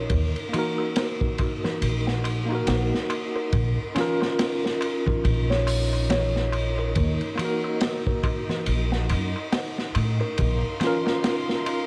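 Worn, warbling cassette tape with drifting pitch and a small-room reverb colours this melancholic, smoky trip hop fragment, cut from a longer piece and built on a swung, crunchy breakbeat kit with a punchy kick and dark cymbals, backed by a crisp metal-shell darbuka in the background. A woody pizzicato upright bass sits up front beneath a clean tine electric piano with tremolo and tape echo, while a delicate, slightly out-of-tune music box plays arpeggios through a filter sweep and a nasal, detuned bowed-like drone hums in the background. The bass stops at 10.6 seconds, just after an intimate chamber violin section enters at 10.4 seconds with soft-attack sustained chords over the closing Bbmadd9.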